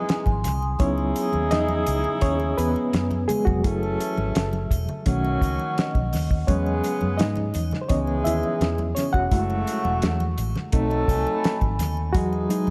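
Set in a light small-room reverb, this smooth 1970s-style soul excerpt moves at a relaxed 85 BPM in 4/4, drifting through lush jazzy chords from G#7b13 to a closing Emaj7. A reedy, worn, slightly out-of-tune electric piano with fast tremolo, heard through its built-in speakers, carries the solo, backed by mellow horn stabs with vibrato, octave doubling and tape echo. Underneath sit a dry, cloth-damped drum kit with a fat snare and tight kick placed up front, a round, punchy foam-muted fingered bass entering at 0.3 seconds, very quiet hand-struck congas, a shimmering compressed triangle in the background, and a metallic, ringing vibraphone with fast motor vibrato.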